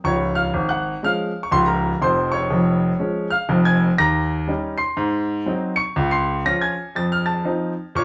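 A lilting swing on the eighth notes drives this short stride piano passage in common time, giving it a playful, strutting bounce. A clear baby grand piano carries the whole eight seconds alone, ranging from Db1 in the deep bass up to Db7 in the high treble. Its polished tone sits up front and present in the mix. The harmony moves through a lively turnaround, starting on Db, passing through Db/F, Eb7 and Ab7, returning to Db and closing on F7 at 7.0 seconds. A wet studio reverb with a short decay gives the sense of a live performance in one room. The passage is cut from a longer piece.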